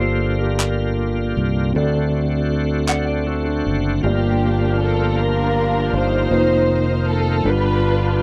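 Slow gospel in 6/8 at 52 BPM in G minor, solemn and soulful, with a straight feel and a dry, close 1970s-style studio sound touched by light reverb. A fingered electric bass sits punchy and up front, while a mellow tine electric piano plays clean accompaniment through its built-in speakers, and a bright tonewheel organ holds shouting, lightly overdriven chords with key click, chorus vibrato and a fast rotary speaker. A dark, compressed electric guitar plays a clean second line over the opening until 4.0 seconds, and a close group handclap adds hollow, human percussion from 0.6 to 3.2 seconds. At 4.1 seconds a lush studio string section takes the melody, bowed sul tasto with vibrato and a woody, shadowed ensemble tone. The harmony moves from Gm7 and D7 into Gm7, F7sus4 and a closing G7, in what sounds like a cut from a longer piece.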